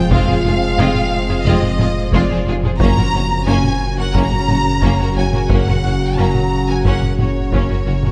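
A hybrid orchestral and electronic film-score cue, vast and tense, cut from a longer piece, where a lush, vibrato-rich violin section carries the melody over a second violin line and a focused viola accompaniment set in the background. Mellow French horns and very quiet soft-attack trombones hold sustained chords alongside a glassy, ethereal FM pad. Beneath them a deep, thick saturated sub bass joins a dark cello section, a rich double bass section and a quiet tuba on the low line, while close, dry taiko drums struck with hard sticks sit back in the mix, all within a reverberant concert hall.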